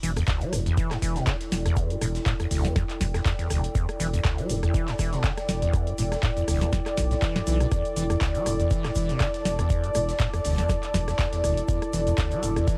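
Lo-fi and gritty, with light reverb and the haze of a home cassette recording, this excerpt from a longer acid house piece sits on a single Em7 chord in E minor at 121 BPM with a 16th-note swing. A squelchy, resonant sawtooth acid bass with a filter sweep and overdrive carries the riff over a thick, saturated sine sub bass, while an overdriven deep electronic kick enters at 0.3 seconds alongside a dry, booming analog drum machine of tonal snare, metallic hi-hats, handclaps, rim click and shaker. A mellow, detuned sawtooth pad holds sustained chords with sidechain pumping, a warbling, nostalgic square-wave pad drifts in at 0.4 seconds with chorus and dark reverb, and a very quiet acoustic arena kit adds hall-like hi-hat, shaker and snare far in the background.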